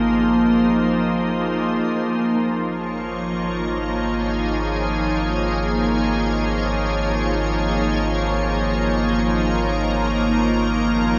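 A soft, organ-like pad sits up front, pure and bright with ensemble chorus and shimmer reverb, holding sustained chords that move from Abadd9 to Bbm/Ab at 1.9 seconds over a round, deep analog bass on Ab1, all in a serene, free-time ambient excerpt bathed in a cathedral-like reverb.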